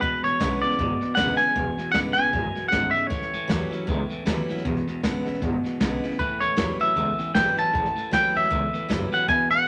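Upbeat and rowdy, this swinging rockabilly excerpt at 156 BPM in E mixolydian moves between E7 and A7, led by an up-front, twangy clean electric guitar melody over a slightly broken-up electric riff with spring reverb, a full-bodied picked dreadnought acoustic, a woody, thumpy pizzicato upright bass and a brushed kit with a boomy kick, while a mellow upright piano slips in at 9.3 seconds in the background.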